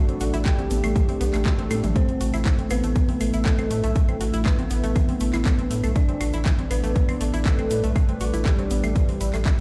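An overdriven, punchy electronic kick enters at 0.5 s and drives this dramatic melodic techno excerpt at 120 BPM, with a round, deep analog bass, an overdriven house kit of claves, handclaps, bright hats and toms, and a grainy egg shaker in the background, the bass and kit pulsing under sidechain pumping. A soft octave-layered lead with vibrato carries the melody in a dark chorused and phased haze with cassette tape and dub echo, joined by an eerie, inharmonic FM bell, tight detuned sawtooth arpeggios, a moody sustained pad and a very quiet, warbling lo-fi tape-like pad over chords moving from Dsus4/A to Am and back. A drum fill at 1.7 s and a faint electronic swell add lift, and the whole mix sits in a stone room reverb as if played on a big sound system in a bare room.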